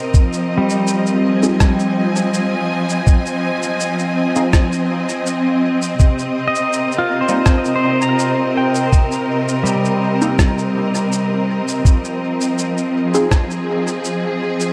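Ambient dub at 82 BPM in F minor, deep and meditative, moving from Fm7 to Cm7 and back in this short excerpt. A lush, bowed string section holds smooth, vibrato-rich chords up front, while a thumpy, muffled, sampler-style kick sits prominently beneath and a quieter compressed shaker and rim click ring through dub echo. From 0.6 s a clean electric pedal steel guitar plays fingerpicked slide arpeggios with volume swells and echo, and from 1.4 s a detuned, filtered sawtooth-and-square chord stab sits in the background with phaser, chorus, tape character and dub echo, the whole set in a moderate echo-chamber reverb.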